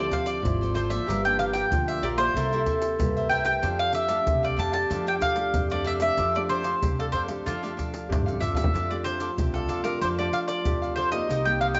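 Samba and choro at 94 BPM in F major, festive and lively, with an up-front, double-string mandolin leading the melody over a mellow, punchy clarinet second line, crisp picked cavaquinho, fingerpicked classical nylon-string guitar and a growly, woody pizzicato upright bass, while a close, dry, hard-hand percussion group of egg shaker, tight surdo, pandeiro and tamborim joins at 0.1 seconds and breaks into a drum fill at 8.1 seconds, all in a wet echo-chamber reverb with a dark top end in this short cut from a longer piece.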